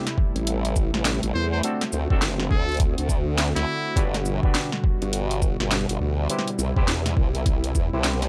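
Glitch hop with a gritty, swaggering strut, this short cut from a longer piece rides a swung groove through a dry, cassette-tinged hardware sound. A pitched-down, thumpy electronic kick sits up front with a layered kit of cracking snare, bright hats and shaker, both overdriven, the kit re-recorded in a small room. A detuned sawtooth wobble bass with a formant filter enters at 0.4 seconds, chorused and tube-saturated, while a mellow, detuned pad holds sustained chords coated in 12-bit sampler grit and pumped by the sidechain. A stringy, overdriven clav jabs out stabs through auto-wah, analog delay and a combo amp. From 1.3 to 4.0 seconds a brilliant, forceful trumpet solo cuts in with vibrato and scooped notes, roughened by sampler grit and trailed by delay, over a progression moving from Am7 and D7 to Gmaj7 and Cmaj7.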